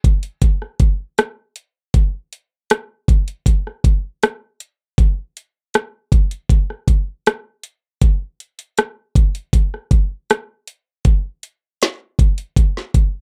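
This is a dry, close recording with a 1970s studio character and very little reverb, cut from a longer piece. It is a heartbroken, melancholic pop groove at 79 BPM in a straight 4/4, carried entirely by a smooth R&B drum kit that plays from 0.0 to 13.1 seconds. The kit has an electronic, produced quality, with a knocking kick, a woody snare, metallic hi-hats and a rim click. Re-recorded in a small room, the drums sit up front, giving the slow groove an intimate, close-up weight.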